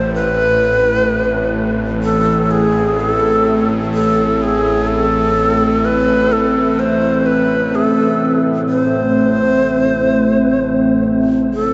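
A breathy, close-miked shakuhachi melody with vibrato and diffuse delay opens this cavernous, desolate dark ambient drone excerpt over a nasal, string-like bowed drone, and from 1.3 seconds a deep, detuned analog pad with chorus fades in to join them, the whole piece set in a vast, echoing cathedral reverb with its highest frequencies trimmed away.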